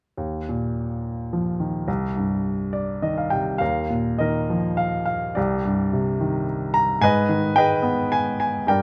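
A clear, polished baby grand piano plays alone in this hopeful, relaxed classical excerpt, a lyrical solo in Eb major and 3/4 at a rubato 98-114 BPM, moving through Ebsus2, Cm, Cmadd9 and Abm harmonies across its range from C2 to Bb5, with a fill from 2.4 to 3.6 seconds leading into a new section, all captured up front by close, detailed microphones in a light reverb.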